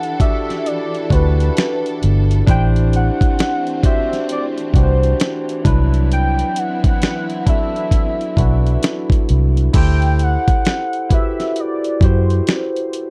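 A dry, close recording with a 1970s studio character frames this short, sultry neo-soul and R&B excerpt, set to a slow, swung 4/4 groove. Up front, a dusty sampler-style drum kit pairs a thumpy kick and medium-tuned snare with hi-hat and crash cymbal, its compressed, gritty sound anchoring the track, while a dark, round, foam-muted fingered electric bass enters at 1.1 seconds with a punchy, amped tone. A barky tine electric piano, bright and clean through a combo amp and colored by phaser, supplies the accompaniment beneath a velvety synth lead that carries the melody with chorus, tape echo and vibrato. Lower in the mix, a lush studio string section holds bowed, sustained chords until 9.7 seconds. The harmony moves through Em9, Am11 and Cmaj7 before settling on D9sus4, giving the passage a soulful, unresolved glow.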